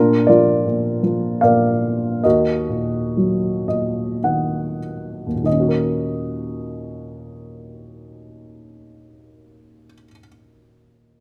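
In a rubato 3/4 that drifts between 45 and 85 BPM and slows through the opening 5.5 seconds, a solo grand piano plays a lyrical, wistful classical passage in Eb minor, moving from Bb to Ebm and a fill at 3.2 seconds before settling on Ebm7 as a new section begins at 5.5 seconds. The piano sits up front with a dark, mellow tone and short sustain, spanning Eb2 to Gb5. A moderate recital hall reverb surrounds this brief fragment of a longer piece.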